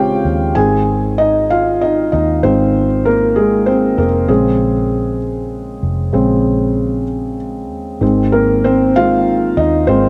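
Six-eight pop ballad in Ab major at 64 BPM, swaying and heartfelt, where a soft, intimate felt-muted upright piano sits up front carrying the accompaniment throughout while a dark, round, foam-muted fingered electric bass supports it underneath, the pair moving between Bbm7 and Ab inside a lush hall reverb on a home cassette recording, cut from a longer piece.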